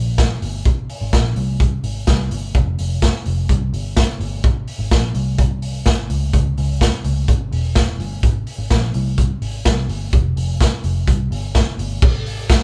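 This cut from a longer piece sounds like a band playing live together in one small room, with a moderate, short reverb giving it a close, lived-in air. It is jangly indie pop in Ab major, moving at 127 BPM in a straight 4/4, with a youthful, breezy mood. A vintage electric bass, picked and foam-muted, opens at 0.0 seconds with a dark, round, amped tone. A raw garage drum kit joins at 0.2 seconds and sits up front, its boomy kick, medium-tuned snare, hi-hat, ride and crash heard through a pumping small-room sound. The kit is saturated and gritty, with dusky cymbals and a rolled-off top, and both parts carry on to the end at 12.6 seconds.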